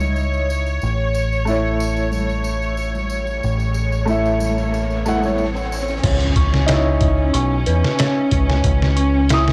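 A dark, smoky trip hop fragment opens with a woody upright piano under tremolo, tape echo and a filter sweep, set over distant bowed strings with light vibrato and a round, up-front dub bass, while bright tambourine and congas sit far back in a large room. A background electronic riser begins at 3.0 seconds and gives way to an impact at 6.0 seconds, where the hand percussion drops out, a gritty, pitched-down sampler drum kit with a thumpy kick arrives up front, and an eerie, detuned FM synth bell plays arpeggios through chorus and tape echo. It sounds like a home recording on cassette, with light reverb.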